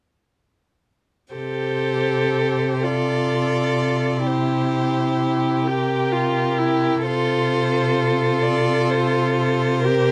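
Tender and warm, this slow romantic movement for string quartet sways in a flexible 6/8 with rubato, its chords moving from F/C to C7 and back to F/C. From 1.3 seconds a clear, smooth violin carries the melody with vibrato. A focused second violin enters at 1.4 seconds beneath it, a rich, even viola supplies the accompaniment, and an expressive cello holds the bass with vibrato and portamento. The production is dark, with light reverb, and the passage is cut from a longer piece.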